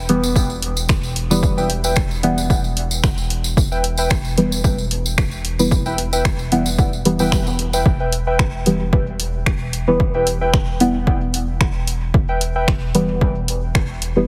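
Heavily compressed, radio-like sound with a light reverb frames this meditative, hazy dub techno excerpt, resting on a single E minor chord. A round, soft sub bass and a punchy, overdriven electronic kick anchor the groove, joined by an overdriven deep house kit of finger snaps and hi-hat, all carrying a gentle swing. Up front, a deep, nasal chord stab with a filtered pluck and dark tone is coloured by chorus, phaser and dub echo, breathing with sidechain pumping alongside the bass. From 1.6 seconds a warbling, detuned lo-fi synth riff with a nostalgic, mellow character drifts through chorus and dub echo until 12.7 seconds. A jingly, close and dry acoustic tambourine adds sparkle until 7.8 seconds, just before the section repeats at 7.9 seconds.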